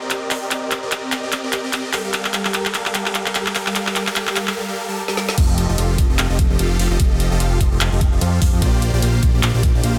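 Future bass with a euphoric, playful mood and a swung, half-time feel, this clip opens with a build-up of huge, lush supersaw chords, bright and detuned with phaser, pumping and digital delay, over a trap kit of woody snare, metallic hats, handclaps and crash cymbal that works through drum fills. At 5.4 seconds the drop lands as a knocking electronic kick and a fat, tube-saturated analog bass enter, the bass thick and pumping beneath the chords as the harmony moves from F7 to Bb69. The mix is dense and heavily limited, with light reverb and digital ambience, and it is cut from a longer piece.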